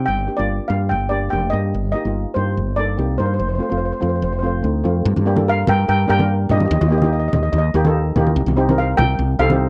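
A round, woody fretless electric bass sits up front in this festive, carefree calypso clip at 145 BPM, under an airy, shimmering steel pan melody and a darker, smooth steel pan accompaniment moving through Gm, Eb and F, while damped, low-tuned congas join in the background at 5.2 seconds, all in a dry, close 1970s-style studio sound.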